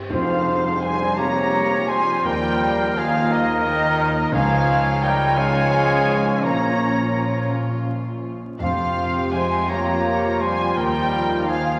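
A dark, distant violin section carries a longing melody over deep, mellow piano in this slow, rubato 6/8 film-score excerpt in F minor at 56 BPM, where a pure, tongued flute, clear clarinet and floating second violins add second lines over sul tasto violas, cellos and double basses, warm horns sustain chords, very quiet tam-tam and hard-mallet timpani mark the opening (timpani returning at 8.6 seconds), and a wet recital-hall reverb and vinyl crackle surround the moving orchestral sound.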